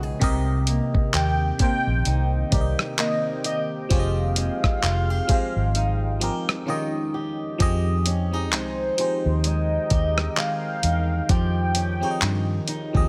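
Sensual and moody, this slow contemporary R&B excerpt in F minor sits at 65 BPM with a swung sixteenth feel, built on a gritty, thumpy sampler-style soul drum kit of kick, rim click, hi-hat and handclaps that enters at 0.2 seconds over a round, foam-muted vintage electric bass playing from the start, both up front. A glassy FM electric piano with bell-like attack, treated with chorus and phaser, plays accompaniment while a woody, boxy old acoustic guitar fingerpicks arpeggios through tape echo, and a deep, detuned ambient pad holds sustained chords in the background with chorus and its own reverb. From 1.2 seconds a velvety synth lead with vibrato, chorus and tape echo carries the melody over chords moving from Cm7 to Fm9 and Eb9, with a brief break at 6.7 seconds before the Fm9 returns at 7.6 seconds in a dry mix.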